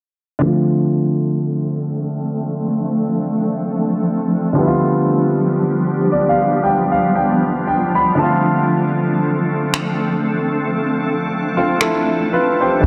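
A warm concert grand piano with deep bass opens this sensual, moody contemporary R&B excerpt at a slow 58 BPM in D dorian, moving from Dm7 to G7 and back with a fill around 5.6 seconds, as a blurred, detuned granular cloud pad enters at 1.5 seconds with sustained chords carrying built-in reverb under a filter sweep, and a booming analog drum machine with a deep, tape-tinged kick and finger snaps arrives at 9.7 seconds in a dark production.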